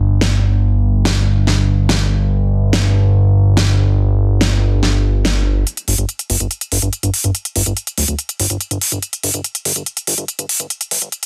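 A straight 4/4 pulse at 143 BPM drives this hypnotic psychedelic trance excerpt, with a big-room electronic drum kit entering at 0.2 s, its huge snare and crisp hi-hats layered and up front. Beneath it a thick analog bass of detuned sawtooth and square waves sits low between D1 and G1, fast in attack and sustained, its tone shaped by a filter sweep and a moving notch. From 5.7 s the music becomes a build-up carried by a filter sweep, set in a digital ambience with a dense, heavily limited modern master and a high-pass filter.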